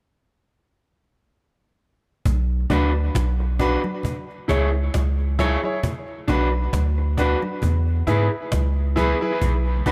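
A swung sixteenth-note dub reggae groove in four lands at 2.3 seconds after a drum fill. It brings in a round, up-front sub bass, a snappy cajon with snares in a live room, and ringing congas played with soft hands in the background, their echo trailing on tape. From 2.7 seconds a dark, slightly broken-up fingered electric guitar and a clear vintage grand piano with smooth stabs, both echoed on tape, move through Bm, C#m and E, giving this deep, heavy excerpt a light reverb.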